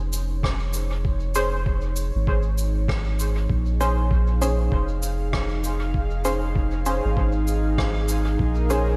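The rhythm sits at 98 BPM in 4/4 with a swung sixteenth-note feel, driven by a muffled, thumpy, pitched-down electronic kick and a distant, roomy cabasa and rim click trailing dub echo. This spacious, hazy slice of ambient dub in Bb minor rests on a single Bbm9 chord. An airy, breathy pad with a slow attack and mellow chorus fades in from the opening moment and holds sustained chords above a deep, round sub bass that sits up front in the mix. From 1.4 seconds, a muted, filtered dub chord stab with a fast attack and decaying tail enters, its detuned sawtooth tone dressed in lush chorus and dub echo. At 8.5 seconds, a bubbling, resonant texture of random filter steps surfaces in the background with its own reverb, and the whole passage rests in a small room with light reverb.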